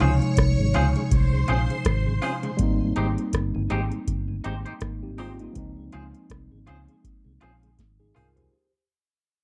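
Lovers rock reggae with a tender, smooth mood, heard as a short fade-out cut from a longer piece and moving through Dbmaj7 and Abmaj7 chords. A booming analog drum machine sits up front with a deep, overdriven kick, crisp snare, metallic hats, rim clicks and toms, closing with a drum fill at 7.8 seconds. A round, foam-muted fingered bass anchors the low end, while a twangy, scooped electric guitar cuts through with bright stabs bathed in spring reverb. A worn, slightly out-of-tune tine electric piano, lightly overdriven with slapback echo, carries the accompaniment beside a mellow tonewheel organ whose slow rotary speaker and key click linger in the background. A swirling sawtooth string machine with ensemble chorus and phaser adds a soft-attack second line that stops at 2.6 seconds, and the whole has a dry, close 1970s-style studio sound with light reverb.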